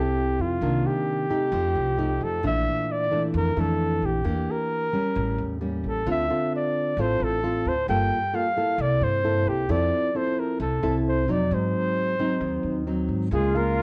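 Heard through worn, warbling old cassette tape with a warbly pitch drift and a moderate large-studio reverb, this sunny, romantic bossa nova moves at 132 BPM in a straight 4/4 and sits in F major. Up front, a solo flugelhorn carries the melody in a jazz style, its tone warm with light vibrato, scooped notes and a smooth top. Beside it, a classical nylon-string guitar accompanies in a thumb-plucked style with the odd finger squeak, while a woody pizzicato upright bass with steel strings holds the low end. The harmony is rich, passing through chords like Fmaj7, Bbmaj7#11, A7b9 and Gm9 before an Ab7 turns toward Db6 at 13.3 seconds. Just then a small flute group slips in with an airy, tongued, expressive line, and at 13.5 seconds a bright, barky tine electric piano, lightly overdriven through a combo amp, adds a single high touch as this fragment of a longer piece cuts off at 13.8 seconds.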